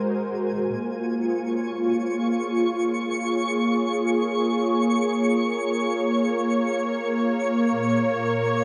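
A mellow, detuned sawtooth pad with chorus sits up front, holding slow-attack chords in Bb minor through this spacious, reflective ambient fragment in free time, while a twinkling granular texture adds a high, sparkling octave-up shimmer, a worn, slightly out-of-tune tine electric piano plays very quiet arpeggios in the first 0.7 s, and a reedy, breathing harmonium drones barely audibly until 0.8 s, the music resting in a vast, echoing space as the harmony moves from Ab9 to Bbm7 and finally a rootless Gb/Bb.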